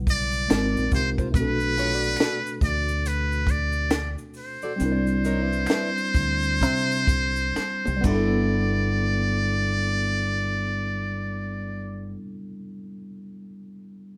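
A buzzy, brilliant trumpet with a metal mute plays a jazz-style solo with light vibrato up front in this soulful R&B and neo-soul piece in G major at 60-71 BPM with a swung 16th-note feel, over a worn, slightly out-of-tune tine electric piano, a round, dark fingered dub bass, a dry compact cocktail kit with a punchy kick and high-tuned snare, faint maracas and finger snaps, and a full-bodied fingerpicked nylon-string guitar that enters in the background at 1.2 s, as the band, playing together in a lightly reverberant room, slows from 1.3 s and a drum fill arrives at 7.6 s.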